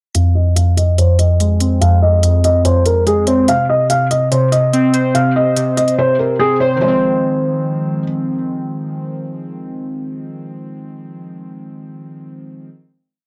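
Warbling lo-fi synth keys open this brooding, melancholic trap piece, their patterned arpeggio in eighths looping like a sample through chorus and phaser as a filter sweep runs across the opening breakdown. Crisp electronic hats with a tape-softened edge enter alongside them, carrying a half-time beat dotted with fast rolls until they fall silent at 6.0 seconds. A felt-muted upright piano sits up front with a soft, dark, intimate looping melody, its thick felt and audible action noise adding a close, private texture. After a stretch of the breakdown where the harmony drops away, the keys settle on a lingering final chord from 6.8 seconds, with the piano fading out at 8.0 seconds. The whole track has a dry, gritty cassette character and the feel of a small room.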